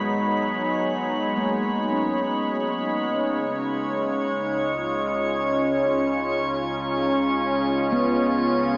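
Heard through a small speaker and bathed in a vast cathedral reverb, this melancholic, reflective ambient fragment at 55 BPM opens with a soft, barely audible felt-muted upright piano melody, its action noise audible, that ends at 0.8 s, while an up-front, detuned sawtooth analog pad with chorus sustains chords moving from G#m7 to C#7 at 3.0 s, a ringing stainless-steel handpan plays meditative fingertip arpeggios in the background, a deep, ominous rumbling drone anchors the bass, a resonant ring-modulated drone shifts its overtones, and a glassy texture of drifting harmonics floats calmly up front.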